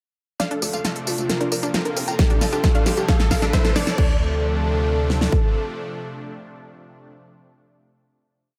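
This soaring, euphoric uplifting trance piece opens at 0.4 s on a build-up. A detuned unison pluck plays a repeating sixteenth-note riff in thirds and sixths over a pedal note, shadowed by a very quiet unison double, while a velvety synth lead with chorus and delay carries a smooth second line, a lush supersaw pad holds the chords, and a round analog pluck runs a 32-step arpeggio sequence, with both plucks under a filter sweep. Crisp programmed hats, tambourine, snare and crash fill out the build alongside a tight, galloping sawtooth bass and a faint riser, then a punchy four-on-the-floor kick with a huge snare lands at 2.2 s, with sidechain pumping on the bass, pad, arpeggio and lead pluck, before everything settles at 4.0 s onto a final Dm7 chord in light reverb.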